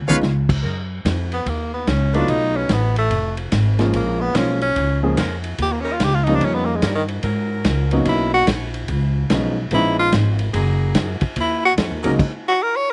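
Brassy and joyful, this big band swing excerpt in F# major at 145 BPM opens on a drum fill from a muffled, lo-fi vintage kit with dark cymbals and a punchy kick, as a woody, growly pizzicato upright bass and an intimate baby grand piano with audible action noise settle in, a bright saxophone section holds vibrato-laden chords from 0.6 s, and a breathy tenor saxophone with scooped notes and light vibrato takes an up-front solo from 1.3 s over changes resolving to F#69, all in a dry, outdoor sound.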